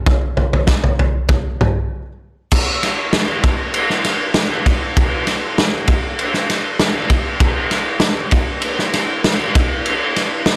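Rock drum excerpt with a cathartic, angsty mood: a loose indie kit of punchy kick, medium-tuned snare, toms, crash and ride, its dark cymbals and gritty saturation sitting up front in a dry studio room, breaks briefly at 1.9 seconds before a new section from 2.5 seconds carries it on to the cut at 10.6 seconds.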